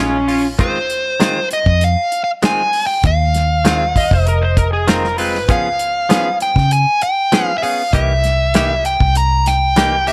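Smoky and mournful, this straight-eighth soul blues excerpt in F minor moves at 98 BPM, with a dark, smooth, overdriven lead guitar carrying the melody up front from 0.6 seconds. A bright, overdriven slide guitar plays a second line until 5.5 seconds, while a twangy, clean, direct-recorded electric guitar adds compressed stabs bathed in spring reverb. A round, foam-muted, punchy fingered bass anchors the low end, and a soul drum kit with a tight kick and rolled-off top enters at 0.3 seconds. The harmony moves from Bbm7 and Fm7 to Db7 and a closing C7#9, all in a small room with light reverb.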